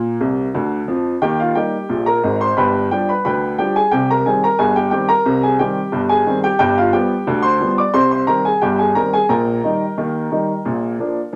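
A straight two-beat pulse drives this lively, cheerful ragtime piano passage, cut from a longer piece, played entirely by a solo baby grand with a warm, boxy tone that sits up front. A short fill opens it between 0.2 and 1.2 seconds before the main strain settles into a cycle through Eb, G7 and Cm, closing on Bb at 10.7 seconds. A wet studio ambience with a brief reverb tail surrounds the piano.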